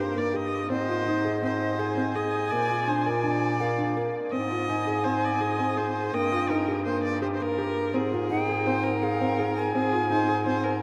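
A huge, wet reverb places this short cut from a longer chamber piece in a vast, echoing space, giving it a shimmering, restless air. The contemporary instrumental music runs in an uneven 5/4 at 166 BPM with a straight feel, tuned to A4 = 444 Hz, and it moves through Eb/G, a rootless Fm7/Ab, Bb and Ab before circling back. A felt-muted upright piano plays soft, mellow arpeggios with audible action noise, while a clear bass clarinet, vintage in tone and up front in a classical style, carries the bass line. From 0.7 seconds a close-miked jazz flute takes the melody with an airy, reedy tone, a gentle attack and vibrato. A focused viola, a single bowed player with its own vibrato, adds a second line.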